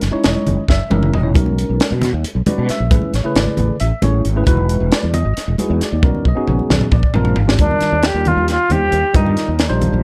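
Driving along in a straight 7/8, this bright, funky electric jazz fusion excerpt sets a growly, up-front fretless bass with ensemble chorus against a crisp drum kit with a high-tuned snare and punchy kick, fills at 0.7 and 6.0 seconds, clean tine electric piano chords through analog chorus, and soft-handed congas in the background, before an airy, reedy concert flute takes a tongued, straight-toned melody at 7.6 seconds over a dark, warm small-room production.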